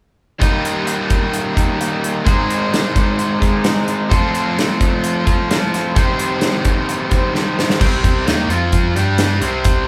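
Classic rock at 130 BPM in C minor with a gritty, swaggering mood, this short cut from a longer piece sets a bright, overdriven guitar riff up front against a second, warmer overdriven guitar riff and a big acoustic drum kit with bright cymbals, a medium-tuned snare and a punchy kick. After a drum fill at 7.3 seconds, a dark, round, overdriven fingered bass joins at 7.8 seconds as the chords shift to C minor and power chords, all played live in one room with a moderate large studio reverb.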